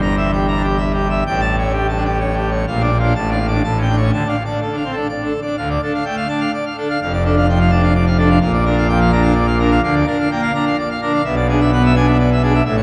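A straight 3/4 pulse at 127 BPM drives this brilliant, majestic classical organ toccata excerpt in D minor, where a solo pipe organ on full organ with mixtures and a romantic voicing sits up front, spanning F1 to Bb5 from 0.0 to 12.8 seconds. The opening passage moves through harmony from Edim/G and A7 to Bb and settles on Dm at 4.1 seconds, before a second section at 5.6 seconds travels through Dm/F and Bb toward a closing E7/B. A wet cathedral reverb with a 5.9-second tail gives the sound a vast, resonant space.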